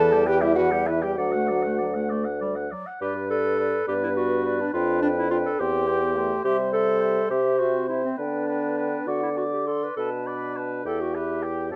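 A graceful, lively classical-period movement for wind quintet opens with all five players together: an airy silver flute with vibrato carries the melody over a distant, roomy oboe on the second line, while a close-miked, up-front clarinet and a warm French horn fill the accompaniment and a mellow bassoon anchors the bass, all moving in a quick, rubato 6/8 at about 65-71 dotted-quarter beats per minute in G major, passing from an E minor opening into a new section on a G chord at 3.0 s, with light reverb throughout this short cut from a longer piece.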